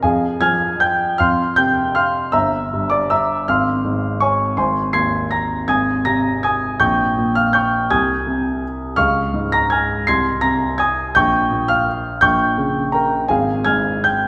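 Bathed in the lush reverb of a church or concert hall, this nostalgic, bittersweet 14-second excerpt from a longer classical piano waltz in F minor features a smooth, vintage-toned grand piano, placed up front, playing solo in 3/4 with a free rubato feel at 153-174 BPM, spanning G1 to C7 over chords that move from Fm through Ab and Db before settling on Fm/Ab.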